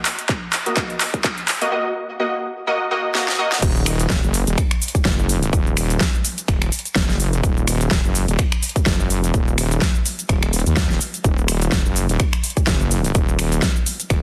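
A big-room dance drum kit with a huge snare, metallic hats, finger snaps, handclaps, shaker and crash opens this gritty, bouncy bass house excerpt at 126 BPM in Eb minor with swung 16ths and a drum fill, joined by a punchy, overdriven electronic kick and a bright, detuned orchestra-hit-like synth stab with reverb and delay under a filter sweep through the build-up, until the drop at 3.6 seconds brings in a heavy, saturated wobble bass with chorus and sidechain pumping, all within a dense, heavily limited mix.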